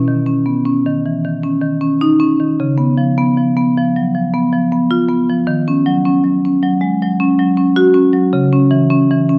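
A solo marimba played with medium hard mallets sits up front in this flowing, warm contemporary classical passage, its mid-forward tone ranging from B2 to F#4 in a rubato 5/4 across 9.4 seconds cut from a longer piece. The harmony moves through Badd9, C#7 and D#m7 before settling on C#m at 8.3 seconds. A moderate recital hall reverb surrounds the instrument, and the dark production, topping out at 10.5 kHz, carries a faint mains hum.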